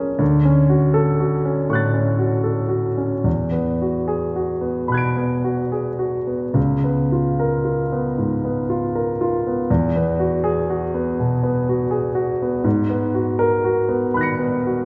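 Bathed in a lush scoring-stage reverb and heard from further back in the room with a rolled-off top end, this fragment of a longer impressionist classical piece sets a smooth, vintage-toned solo grand piano moving through Dmaj7, E9, C#6, Eadd9 and G#m11 at a rubato 70-82 BPM in 4/4, its mood luminous and serene.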